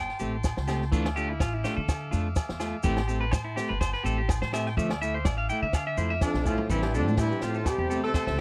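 A warm, bittersweet highlife guitar band groove in a light swing, this short piece cut from a longer recording opens with a bright, twangy clean electric guitar spinning arpeggios through tape echo, carrying a solo until 6.7 seconds over a drift between minor chords. A second clean electric guitar sits up front with picked accompaniment, while a buzzy vintage combo organ holds sustained chords in the background through spring reverb. An up-front pizzicato upright bass gives a woody, thumpy bottom, and a compact cocktail drum kit adds a punchy kick, a high-tuned snare and toms, with grainy maracas and ringing agogo bells tucked behind. A drum fill at 6.2 seconds ushers in a tight, punchy horn section with vibrato and octave doubling, carrying the melody, as a jazz-style trombone with scooped notes and tape echo plays a second line in the background. The sound is a dry, close 1970s-style studio recording.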